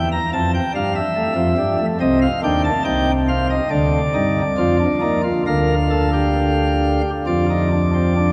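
A cathedral's long, wet reverb, decaying over about 5.4 seconds, surrounds a pipe organ whose light, sparkling flute stops sit up front in a bright baroque voicing. This elegant, joyful fragment of a baroque-style three-part fugue in Bb major is cut from a longer piece. It moves at a steady 66-72 BPM in straight 4/4. The organ plays alone for the full 8.3 seconds, ranging from C2 up to Bb5. The harmony opens on F, passes through F7 over C and Bb over D, and settles on a bare F5 near 7.3 seconds.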